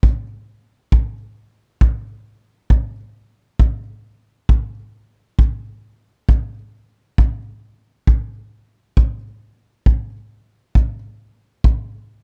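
Gritty and rollicking, this short blues fragment in a straight 12/8 feel is built on an acoustic kick drum, heard from 0.0 to 11.8 seconds. The kick sits up front, punchy and roomy, with brushes in the mix, while the overall sound stays fairly dry, carrying little reverb. It is cut from a longer piece.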